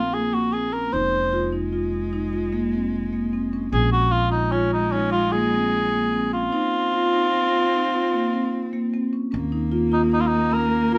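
Pensive yet urgent, this contemporary chamber excerpt moves at 150 BPM in an uneven 7/4, with a mellow, smooth-topped cor anglais singing the classical-style solo melody up front over a dark, close bowed cello line with vibrato, round soft-mallet marimba arpeggios and a woody pizzicato upright bass, all in a moderate studio ambience as the harmony passes from Fm7 to Bb7(no3) before shifting to Eb7(no3) at 9.3 seconds.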